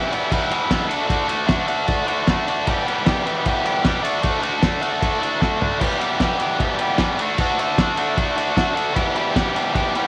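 A biting, overdriven electric guitar opens this raw, menacing garage rock excerpt in E minor, picking a bright, double-tracked riff up front that swings between E minor and D at a driving 153 BPM in straight 4/4. A cloth-damped, thuddy acoustic kit joins almost at once, its fat snare, tight kick, toms and dark crash and ride cymbals sounding muffled, gritty and saturated in a small lo-fi room with a rolled-off top. A drum fill breaks through at 5.4 seconds, and a moderate spring reverb gives the whole short cut a grimy studio sheen.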